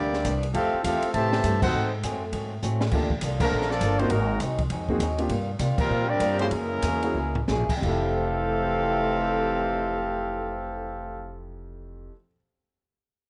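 Big band swing in F major at 172-202 BPM, a joyful, swinging excerpt in which a clear, up-front trumpet section with plate reverb carries the melody over a soft-attacked trombone section with light vibrato, a boxy old ladder-braced acoustic guitar picking in the background, a woody, growly pizzicato upright bass and an open drum kit with dark cymbals, a high-tuned snare and a boomy kick, while a deep-bassed concert grand piano joins at 2.9 s, band accents punctuate the line and the tempo slows from 5.3 s to 7.8 s.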